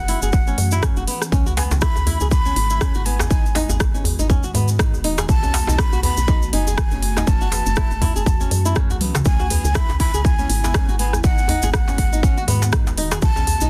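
Hypnotic and spiritual, this afro house piece at 121 BPM in C# minor rides a swung groove, with a punchy, up-front electronic kick, an afro-pop kit of crisp hats, rim clicks and toms with a soft-clipped snare, a grainy shaker, and a tight, cracking djembe in the background that enters at 1.5 seconds. A woody, round FM bass and a fingerpicked flamenco guitar playing arpeggios with delay both pump against the kick, while an ethereal, detuned pad holds sustained chords in the background and a breathy, close-miked concert flute carries the melody through delay. The chords cycle through F#m7, C#m7, G#m7 and B7, a drum fill at 9.0 seconds leads into the repeat, and the dense, heavily limited mix sits in a small room.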